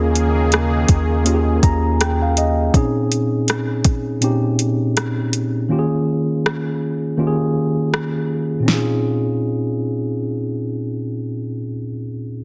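A swung sixteenth-note groove from an overdriven, electronic R&B drum kit with a fat snare and metallic hats drives this moody, sensual contemporary R&B excerpt, where a mellow tine electric piano comps throughout and adds an early fill, while a lush, detuned sawtooth pad with chorus and sidechain pumping and a deep, round 808-style bass sound only until 2.7 seconds, and the kick drops out from 5.7 to 8.7 seconds within a dense, heavily limited master with light reverb.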